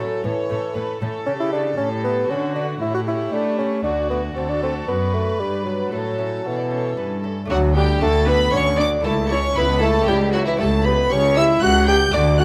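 Classical baroque-style concerto movement in D major at 116 BPM in a festive, lively 3/4, cut from a longer piece, where an up-front mellow solo bassoon carries the melody alongside gut-string violin sections on melody and second line, a dark, distant viola section and a delicate, bright fingerpicked lute accompany in the background, and a close cello section anchors the bass until a rich double bass section joins it at 7.5 seconds, all within a moderate recital hall reverb.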